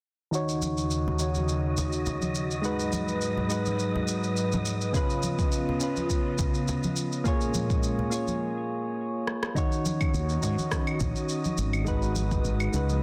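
The recording has a dense, heavily limited modern sound with a light reverb, and this excerpt of a smooth, relaxed sunset chillout track moves at 104 BPM in 4/4 with a gentle swing on the sixteenths, in Eb minor. Soft, round electric-piano-like synth keys sit up front with chorus, a low-pass filter sweep and digital delay, carrying the chords Ebm7, Abm7, Db7 and Bbm7 over an airy, breathy pad that adds a detuned, slowly blooming layer of sustained chords. Underneath, a layered electronic shaker, rim click and claves, with softly clipped snare hits, mingles with bright acoustic congas played with soft hands in the background, while a dark, wind-like tuned noise texture drifts high above with its own reverb. A deep electronic kick joins at 4.9 seconds, a short break arrives at 8.4 seconds and closes with a drum fill, and at 10.1 seconds a mellow, punchy fretless electric bass comes up front to anchor the return to Ebm7.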